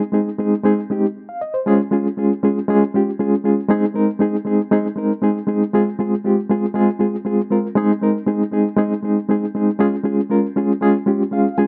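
Soul at 118 BPM in Ab major, this joyful excerpt features a reed electric piano playing alone from 0.0 to 11.7 seconds, moving through Ab, Db and Fm chords. The instrument sits up front with a reedy, clean tone, heard through its built-in speakers with a fast tremolo, and it closes on a short fill at 11.1 seconds. Light reverb and a dark, warm production round out the sound.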